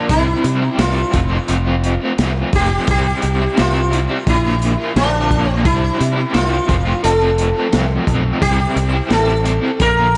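Psychedelic rock with a hypnotic, kaleidoscopic mood, cut from a longer piece and built on a straight 4/4 groove that circles through C, F and Bb chords. A buzzing, shimmering sitar carries the melody up front with tape echo, while a bright, double-tracked overdriven guitar plays a riff colored by tremolo, and a round fingered electric bass sits forward in the mix. A gritty, saturated breakbeat kit of hi-hat, punchy kick and snare joins at 0.1 seconds, dark and rolled-off on top, and the whole recording sits in a small room reverb.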